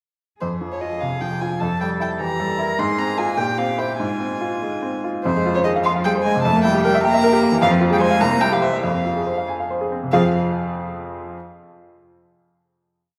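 Restless and stormy, this brief, complete classical-period piece for piano trio rushes along in a rubato 6/8, with a rich, pure violin carrying the melody up front over a warm, floating cello counter-melody that doubles the tune at the octave, both bowed sul tasto with a soft attack and a distant air, while a bright, brilliant baby grand drives rocking broken chords and sweeping arpeggios, the whole set in a wet concert hall and closing on a final chord the piano holds until 11.4 seconds.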